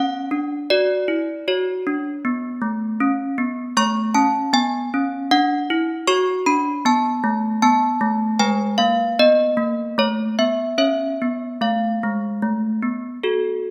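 A wet recital hall reverb with a 1.5-second decay surrounds clear, clanky desk bells that sit up front and ring slightly out of tune. This short classical handbell tune, cut from a longer piece, moves at a solemn, wintry 77 BPM in 3/4 in F# minor, tuned to A4 = 439 Hz. The desk bells play alone from G#3 to C#6, opening on a single F#5 and resting on F# minor before passing through G#m69 and Aadd9 to reach C# at 10.8 seconds.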